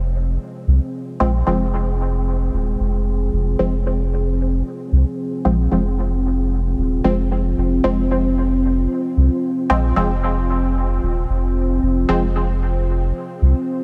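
Dub techno excerpt in F minor at 113 BPM with a 16th-note swing, deep and cavernous: a round, soft sub bass sits up front from the start, beneath a dark, warbling ambient pad of sustained chorused chords with a slow attack, while muted, detuned chord stabs enter at 1.2 seconds, colored by phaser and dub echo under a filter sweep, all within a light reverb.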